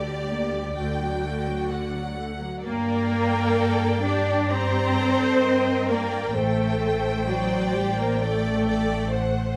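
Classical slow romantic movement for string orchestra in G minor at 65 BPM in a rubato 4/4, melancholic and elegiac, where lush, focused violins carry the melody high above a second violin line while warm violas accompany and smooth cellos and up-front double basses anchor the bass, all bowed with vibrato in light reverb, the harmony moving from G minor over D to D, then from G minor to D7 over A after the music shifts into a new section at 2.6 seconds, in this excerpt from a longer piece.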